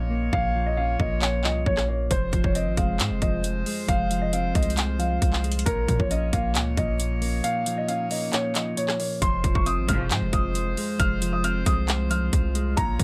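An up-front trap drum kit drives this eerie, dark trap and hip hop cut from a longer piece. Its hard-clipped kick, metallic hi-hats, handclaps and rim clicks enter at 0.3 s with an electronic, tape-warm punch at 135 BPM, felt in half-time. Underneath, a deep, sine-toned 808-style bass holds long notes with a fast attack that decays, while a shadowy concert grand piano carries the melody through a digital delay. A clean, fingered electric guitar adds mellow accompaniment soaked in spring reverb, and a bright, tight woodwind section sustains chords in the background. The kick drops out at 7.4 s as the harmony moves in F minor between B-flat minor and F minor, and a distant, very quiet symphonic string section adds a brief, smooth bowed stab at 9.9 s.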